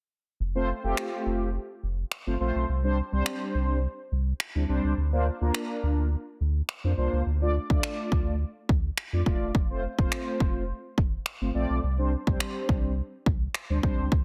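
The recording has a dense, heavily limited modern sound with light digital reverb, in an excerpt of a dance-pop track with a summery, carefree mood and a straight four-beat feel. A round, sine-based sub bass enters first at 0.4 seconds, deep and sustained with a fast attack, pumping under sidechain compression. Just after, a mellow synth brass part of detuned sawtooth and triangle tones adds dark, brassy chords that evolve through a filter sweep, thickened by chorus and pumping with the sidechain as well. The house drum kit arrives at 1.0 seconds with layered electronic finger snaps and a punchy, overdriven kick, plus soft clipping on the snare. Drums, bass and brass all sit up front as the harmony moves from F through Csus2, Bbadd9/D and Dm, then returns to F and Csus2.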